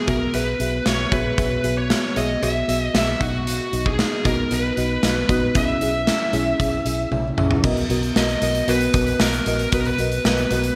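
Nostalgic and glossy, this short piece of 1980s-style pop is cut from a longer piece and moves at a steady, straight pace, with a smooth, overdriven lead guitar carrying the melody up front through a digital delay over a lush, dreamy FM electric piano with a soft, detuned pad layer and chorus. A round, foam-muted fingered bass and a big, punchy rock kit with a medium-tuned snare and rolled-off top anchor the groove, and a drum fill at 7.1 seconds leads into a new section built on a Bmaj7 chord. A faint, jingly tambourine joins at 8.2 seconds, all set in a moderate hall reverb with bright digital-era production.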